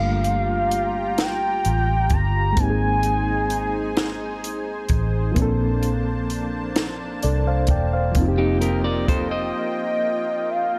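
A gliding portamento lead sits up front, its smooth, detuned synth tone touched with chorus, vibrato and a slapback echo as it sings the melody from 0.0 to 4.4 seconds and returns briefly near the end. This is a slow, sensual R&B groove in six-eight at 43 BPM in Bb major, moving through Gm9, Ab, Bbmaj9 and F9sus4. Beneath it, a reedy electric piano with fast tremolo carries the accompaniment throughout, while a lush, thick unison pad with chorus holds sustained chords with a slow attack and long release. A compact cocktail drum kit with a high-tuned snare and tight kick plays hi-hat, kick and snare alongside a dark, round, punchy, foam-muted fingered electric bass, both sitting close; the drums drop out at 9.3 seconds and the bass at 9.5 seconds as the break begins. An electric guitar at the edge of break-up, compressed and slightly broken-up, enters at 8.4 seconds with a second line, all within a small room ambience in this excerpt from a longer piece.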